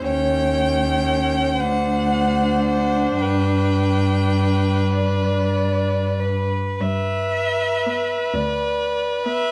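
A slow 6/8 pulse shaped by rubato carries this serene, tender romantic movement for string quartet, cut from a longer piece, where a rich, smooth first violin with vibrato sings the melody from a slightly distant place above a warm second violin line, a focused viola accompaniment, and an expressive cello bass with soft attacks and portamento sitting close and prominent, each part bowed by a single player in a recital hall's moderate reverb as the harmony moves from Eb7 through D7 to G.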